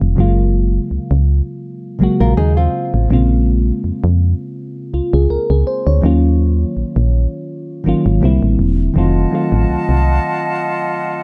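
Contemporary R&B with a longing, late-night mood, moving at an unhurried pace with a light swing. A mellow, full-bodied FM electric piano carries the accompaniment up front, its soft, round tone colored by chorus and phaser and a faint noise layer, while a punchy, dark FM bass sits up front beneath it. A thumb-plucked nylon-string guitar adds a brief classical arpeggio from 2.2 seconds, with finger squeak and a touch of delay. The harmony drifts through Gbmaj9, Bbm9, Ebm9 and C9 before shifting to F7b9 at 9.0 seconds, where a small flute group enters with airy, close-miked sustained chords full of vibrato. The bass drops out at 10.2 seconds, leaving piano and flutes in a small room ambience as this cut from a longer piece ends.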